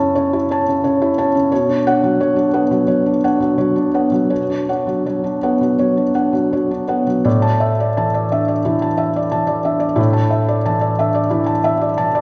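Flowing in a loose, rubato 4/4, this short excerpt from a longer neoclassical minimalist piano piece drifts with an intimate, melancholic calm. A felt-muted upright piano plays alone throughout its 12.2 seconds, sitting up front with a soft, mellow, vintage tone and audible action noise that brings the listener close to the instrument. The harmony moves from F#m7 to Bmadd9 at 1.5 seconds, then settles onto Asus4 at 7.3 seconds as the opening phrase returns. A reverberant recital hall surrounds the piano, its 1.7-second decay lending a churchlike air to the smooth, hushed playing.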